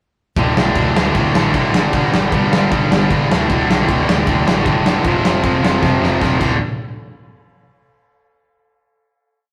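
This short, upbeat and rebellious punk rock piece at 154 BPM opens at 0.4 seconds with two bright, distorted electric guitars up front, driving eighth-note power chords through a riff on D5, G5, D and F5, while a growly, amped bass pushes eighth notes from the background and a big, dark acoustic drum kit with a punchy kick and medium-tuned snare drives a two-step groove. A drum fill arrives at 5.8 seconds, and the riff lands on D5 before a final hit rings out from 6.6 seconds. The rough rehearsal-room recording carries saturation and a stony room reverb.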